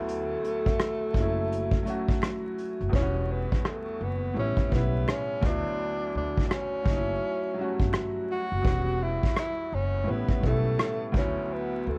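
A breathy tenor saxophone with vibrato and scooped notes carries the melody over a clear, long-sustaining upright piano and woody pizzicato upright bass from the first moment of this melancholic, reflective lo-fi hip hop excerpt at 84 BPM with a swung 16th-note feel in E dorian, as a vintage brush kit with a punchy kick, rim clicks and a rolled-off top enters at 0.1 seconds, a very quiet finger snap joins at 0.8 seconds and the hi-hats are muted from 2.9 seconds, while the sax and piano sit behind a low-pass filter and plate reverb and the whole mix is wrapped in worn, warbling cassette tape with vinyl crackle and drifting pitch.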